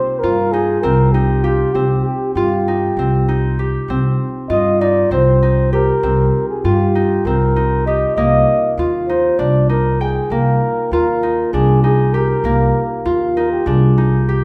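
Bathed in the wet reverb of a recital hall, this restless, urgent contemporary chamber piece in 7/8 sets a dark, breathy flugelhorn melody with light vibrato and scooped notes over bright, ringing fingerpicked harp arpeggios and a woody, growly pizzicato upright bass, the harmony shifting from Cm7 to Absus2/C at 8.2 seconds in this short cut from a longer work.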